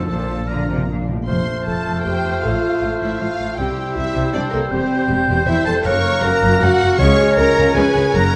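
This spirited, cheerful romantic orchestral excerpt in F major, moving fast at 157 BPM in 3/4, opens with a dark, woody violin section carrying the lush melody over a mellow horn section's sustained chords. An airy silver flute, an oboe and a very quiet second violin line add second lines above viola accompaniment, bright ringing harp arpeggios, and cellos and double basses holding the bass, the basses sliding with portamento. Timpani struck with hard mallets give a fill from 0.1 s and return at 5.8 s, a clear, distant bassoon joins the accompaniment at 1.3 s, and the dramatic harmony moves from Bb through F and C to F# and C# in a moderate recital hall reverb.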